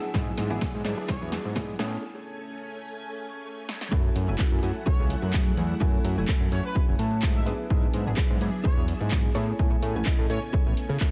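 A punchy, tape-warm electronic kick and an analog drum machine of snare, handclaps and pumping hi-hats drive this swung, funky and nostalgic filtered disco house cut, with a fat, detuned sawtooth bass up front. The opening build-up rides a filter sweep through a break before the drop lands at 3.9 seconds, while a mellow, chorused polysynth comp, a lush string machine and a clean, direct-recorded electric guitar riff with sampler grit and tape echo pump in the background, the guitar adding a fill at 6.8 seconds. After a brief phrase at 1.1 seconds, a clear, smooth-topped jazz trumpet section carries the melody from 4.9 seconds, the mix sitting in light digital ambience with heavy echo.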